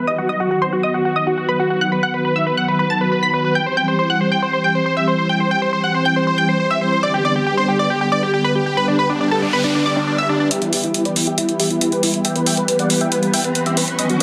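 A huge, detuned supersaw carries the bittersweet, soaring melody of this uplifting trance excerpt over a silky, chorused analog string pad and a punchy delayed unison pluck, all bathed in lush hall reverb, while filter sweeps move through the pad and then the lead as a background noise sweep builds toward 10.5 seconds, where the pluck drops out, a riser begins and a tape-warm electronic hi-hat enters up front.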